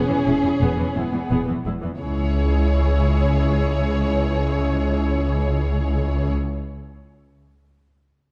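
A dark, concert-hall sound with moderate reverb frames this brief cinematic string passage in C# minor, heroic and epic at 58 BPM in a slow 6/8, where a dark violin section carries the melody with vibrato and portamento over a warm, focused second violin line, even violas, clear cellos entering at 0.1 seconds and lush, up-front double basses joining at 0.3 seconds, the harmony moving from E to C# minor at 2.0 seconds.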